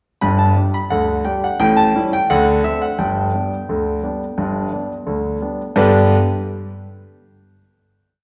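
Playful and cheerful, this short, complete ragtime piece moves at 87 BPM in a straight 2/4 in G major, tuned to A4 = 435 Hz. A clear, up-front grand piano plays alone from 0.2 to 6.2 seconds, spanning G1 to B5 with a single-line melody over a stride bass as the harmony passes from G5 through A7 and D7 back to G. A wet recital hall reverb lends the church or concert hall setting a lingering 1.7-second tail, and a final chord arrives at 5.8 seconds.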